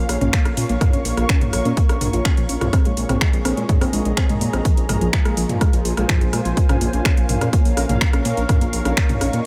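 A dry mix of dark, cinematic melodic techno at 125 BPM in Bb minor puts a punchy, overdriven electronic kick up front over an overdriven deep house kit of finger snaps, metallic hi-hats, rim clicks and toms re-recorded in a large room, while a menacing detuned saw bass with a filter swell, a soft, round pluck playing arpeggios with chorus and delay, a moody analog pad holding sustained chords and a blurred granular cloud pad with its own reverb all pump under sidechain as the harmony moves from Bbm through Absus4/Bb and Fm/Bb back to Bbm.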